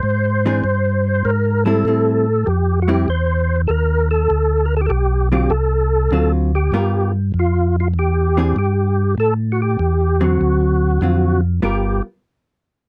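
Dry and close, this brief cut from a longer piece has the intimate, unadorned sound of a 1970s studio session with little reverb. It is a greasy, soulful jazz groove at 98 BPM in 4/4, swung on the eighth notes. A percussive tonewheel organ carries the melody with a full, clean tone, third harmonic percussion and chorus vibrato through a slow rotary speaker. A second tonewheel organ holds down the bass with a mellow, round, dark voice, audible key click and its own slow rotary swirl. Entering at 0.5 seconds, a vintage hollow-body electric jazz guitar adds picked, compressed accompaniment, dark and clean, with all three parts sitting up front. The harmony opens on an E augmented chord and moves through Am7, D7#9, G7#9 and E7alt before returning to Am7 and D7#9, arriving on G7#9 as a new section begins at 11.6 seconds.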